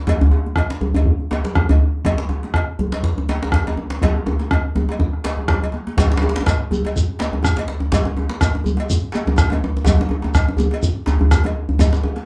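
The recording has the feel of a live ensemble in a small, reverberant room, with a festive energy. This is a powerful stretch of West African traditional drumming, cut from a longer piece, running at 123 BPM in 4/4 with a light swing on the sixteenths and gradually speeding up throughout. Up front sit a round, band-limited bombo with a vintage character and a deep djembe struck with hard hands, while a second djembe sounds tight and cracking from a distance, as if in a large hall. High-tuned congas with thick skins murmur in the background, and a metallic cowbell rings close and dry. A drum fill from 4.0 to 6.0 seconds leads into the second section, where a grainy, mellow shekere joins at 6.0 seconds and plays until about 12 seconds.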